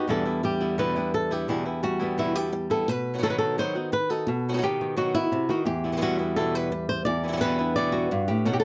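Passionate and fiery, this short flamenco passage, cut from a longer piece, features two fingerpicked acoustic guitars across its 8.6 seconds. A warm guitar sits up front carrying the melody, while a bright second guitar adds stabs as the harmony moves from Em7 to B and back to Em7 at 5.7 seconds. Close, detailed microphones and light reverb keep the sound intimate and immediate.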